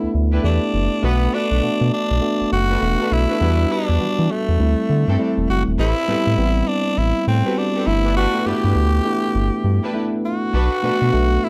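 A swung 101 BPM groove in 4/4 drives this confident, punchy R&B excerpt in A dorian, where a raspy, gritty tenor saxophone carries the melody up front over a worn, slightly out-of-tune tine electric piano and a deep, round analog bass, while a distant, lush string section adds bowed stabs with slapback echo from 0.3 seconds, all captured in a dry, close 1970s-style studio sound with small room reverb as the chords move from G6 through Bm7, Em7 and D7sus4 to Am9.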